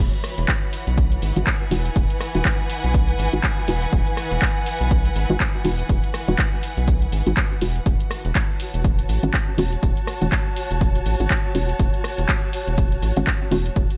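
A swung sixteenth-note deep house groove, built on a punchy, up-front electronic kick and a tape-warm kit of handclaps, hi-hat and rim click in studio reverb, carries this sunny, soulful passage, with a rubbery, hollow square bass bouncing beneath a rich, bowed string section that pumps with the sidechain, while a muted, deep sawtooth dub chord stab with chorus, delay and a filter sweep enters at 1.4 seconds as the harmony moves from Emaj9 to F#m7/E at 7.9 seconds.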